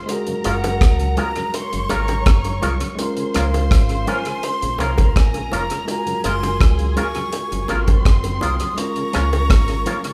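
A breathy, hollow jazz flute carries the melody high above this romantic, smooth lovers rock reggae cut, its soft attack and vibrato floating over a straight 4/4 groove at 83 BPM. The deep reggae drum kit sits up front with a dry, tight kick, hi-hat and rim click touched by tape echo, while a dark, round, foam-muted fingered electric bass holds down the low end from 0.5 seconds, and high-tuned bongos tap softly in the background. A lush violin section plays a bowed, expressive second line, and a worn, slightly out-of-tune tine electric piano adds barky accompaniment through a combo amp with tape echo. A clean, twangy electric guitar with an envelope filter punctuates with compressed, picked stabs, and a smooth tonewheel organ with chorus vibrato and tape echo fills in quietly behind. The chords alternate between Gbmaj9 and Db6, and the band sounds as if playing live together in one room with a moderate large studio reverb, in a 10.1-second excerpt cut from a longer piece.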